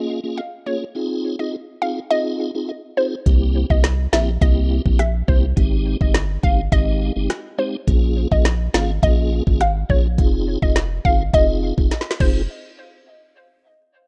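A hollow, detuned square-wave pluck carries the melody from the opening moment of this sultry, bouncy dancehall excerpt, its short filtered notes thickened by chorus and trailed by delay. Beneath it, a piping tonewheel organ plays lightly overdriven accompaniment with audible key click, chorus vibrato and a fast-spinning rotary speaker. At 3.3 seconds a round, deep analog bass arrives up front with a dark, nasal, sustained tone, joined by an electronic island pop drum kit with a knocking kick, woody snare, smooth hi-hats, rim clicks and crash cymbal, roughened by vintage 12-bit sampler grit. Chords move through minor sevenths, a dominant seventh and a major seventh before a drum fill at 11.9 seconds, after which the parts stop and the harmony drops out at 12.5 seconds. The dry, rough home-demo mix puts the drums and bass at the front, with the organ set further back.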